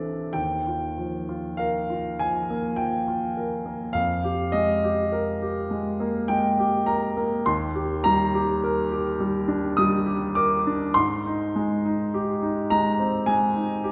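Impressionist classical solo piano, hazy and luminous, drifts at a slow 51 BPM in 3/4 with a free, rubato feel in Eb major. A clear concert grand piano carries the whole fragment alone from 0.0 to 13.9 seconds, ranging from Eb2 up to A6. Its tone is natural and up front, with a deep bass and long sustain. The harmony moves through Ebadd9, Fm11, Ebmaj7 and Abmaj7, each chord lingering for several seconds. A wet scoring-stage reverb with a 2.0-second tail places the listener further back in the room, lending the sound a glowing halo. This short passage is cut from a longer piece.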